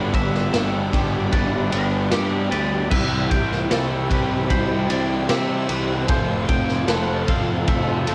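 Blissful and dreamy, this shoegaze and dream-pop rock fragment drifts through G, Cmaj7 and Fmaj7 with a very quiet, swirling phased string machine holding sustained chords, a bright twangy guitar picking chorused, tape-echoed arpeggios, a mellower clean guitar singing a melody from 0.1 s, a pair of overdriven guitars riffing in the background (one crunchy with subtle chorus, the other trailing reverse reverb), a fuzz-drenched picked bass, and an up-front raw garage drum kit with a boomy kick, dark cymbals and a gritty, pumping small-room sound, all captured dry on a home cassette recording.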